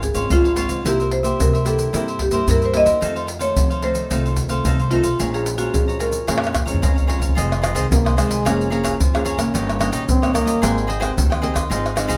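Bittersweet and yearning, this samba and choro piece moves at 110 BPM in a straight 4/4, cut from a longer performance and sitting in Bb minor before turning to F minor at 7.4 seconds. A woody marimba played with medium hard mallets on padauk bars carries the opening melody, while a crisp, picked cavaquinho and a small, fingerpicked nylon-string guitar fill in the harmony through chords such as Dbmaj7, C7, F7 and Bbm7. Underneath, a pizzicato upright bass with steel strings gives a growly, thumpy foundation, and tube shaker, tight surdo, pandeiro and tamborim sit up front with hard hands in a small-room sound. A drum fill leads into the second section, where a dark trombone with light vibrato and a smooth top enters at 7.9 seconds, playing a punchy, forceful jazz-style solo over Fm7, Bbm7/F, Eb7/G and Abmaj9. A moderate studio reverb rounds out the acoustic ensemble.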